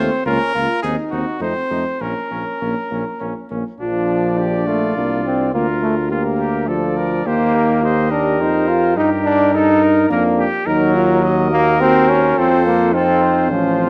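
Classical brass quintet music in 3/4 at 105 BPM, solemn and grave in mood, this excerpt from a longer piece opens in B-flat minor and turns to B-flat major at 3.8 seconds. Two trumpets carry the upper voices, one playing the melody and the other a second line with light vibrato, both with a warm classical tone. Beneath them, a mellow French horn sits in the background with a punchy yet smooth-topped sound, while a trombone, soft in attack and up front, is the most prominent voice in the accompaniment. The tuba anchors the bass with a warm, gently vibrating tone. The harmony moves from B-flat minor through a diminished chord and F7 before settling into the major key, passing through E-flat and a half-diminished chord on the way back to F7, all heard through close, detailed microphones in a recital hall with moderate reverb.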